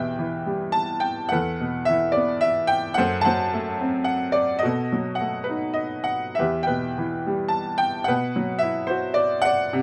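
In a 3/4 at 107 BPM, the time bends freely with rubato, giving this brief classical fragment of about 9.8 seconds the feel of a lyrical solo piano piece caught mid-thought. A single grand piano carries everything, its tone bright yet worn, with short sustain that lets each chord fade quickly rather than ring. The mood is brooding and cool, drawn from a harmonic path that moves from Em through Asus2/E, F#dim and B7 before returning to Em and pausing on Bsus4. The playing spans from E2 up to A5, and the instrument sits up front in a light reverb. The tuning rests slightly high at A4 = 441 Hz, and the passage ends unresolved, as if cut from a longer piece.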